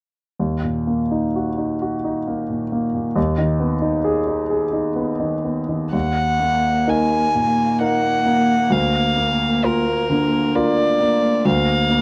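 Classical slow romantic movement for piano trio in Eb minor, an elegiac and melancholic passage cut from a longer piece, moving at 65 BPM in 3/4 with uneven, rubato beats. A clear, polished grand piano opens alone at 0.4 seconds as intimate accompaniment, its action noise audible up front, before a rich, floating violin takes the melody at 5.9 seconds, bowed sul tasto with a soft attack and pure tone. The dark cello joins at the same moment as a quieter second line, bowed sul tasto with vibrato and a smooth top, sitting close yet in the background, while light reverb and the warbly pitch drift of worn old cassette tape color the recording.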